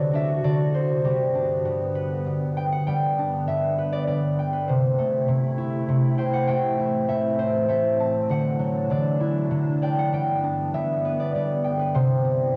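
A fingerpicked concert harp carries a tender, ringing melody up front, its tone coloured by cassette tape, while a glassy FM pad with slow attack, ensemble chorus and its own reverb holds mellow, ethereal chords beneath, forming a gentle lullaby in G major at 99 BPM in 3/4 that moves from D7 to G, C6 and Am, all captured in a small, wet booth on a home cassette recording in this short excerpt from a longer piece.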